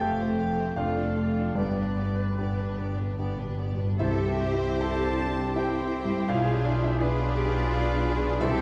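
An intimate grand piano with deep bass and audible action noise sits up front in this passionate, lush fragment of a romantic movement for piano and orchestra in a rubato 3/4, sharing the melody with a rich, vibrato-laden violin section, while a clear oboe, a pure flute and dark, woody violins weave second lines, intense violas accompany, distant French horns hold very quiet sustained chords, smooth cellos and soft-attacked double basses anchor the bass, round soft-mallet timpani enter with a fill at 1.6 s, and a mellow clarinet and roomy tuba join at 4.0 s, the ensemble heard from further back in a wet recital-hall reverb.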